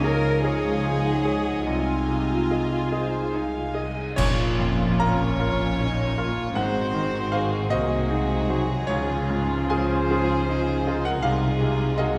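A bright concert grand piano with deep bass carries the accompaniment through this longing, sorrowful cinematic excerpt in a rubato 6/8, beneath a soft-attacked, sul tasto violin melody and a pure, floating second violin line, with intimate, shadowed violas, cellos and woody double basses bowing underneath and a very quiet concert harp ringing out arpeggios. A clear clarinet adds a background second line and a dark French horn section holds sustained chords at the opening, while a cymbal swell, clash cymbals and concert bass drum enter at 1.7 s and mark an ensemble accent as the second section begins at 4.2 s. The orchestra sits in a lush scoring-stage reverb.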